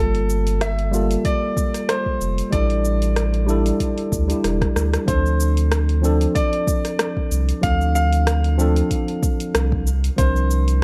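A smooth, vintage grand piano carries the melody over a worn, slightly out-of-tune tine electric piano, both touched with delay, while a round, deep sine sub bass sits up front; at 1.2 s an overdriven electronic kick joins the overdriven deep house kit of cabasa, hi-hat and rim click in this relaxed, dark sunset chillout excerpt with a lightly swung feel, light reverb, a drum fill at 4.4 s, and chords moving from Gm9 through A7sus4 and Dm7 to C9sus4.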